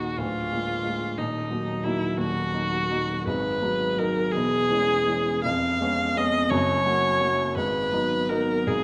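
A wet recital-hall reverb surrounds this short fragment of a longer romantic classical piece, with both instruments placed up front. A single bowed viola, heard close, carries the melody with a rich, smooth and even tone coloured by vibrato. A baby grand piano supplies the accompaniment, its warm, intimate and natural sound carrying audible action noise. The music moves in 6/8 with uneven beats and rubato, giving it a serene, tender mood as the harmony passes through A#7/D, D#m, G#m7, C#m/E, C#7/E#, F# and back to G#m7. Viola and piano play together from the start until the fragment ends at 8.8 seconds.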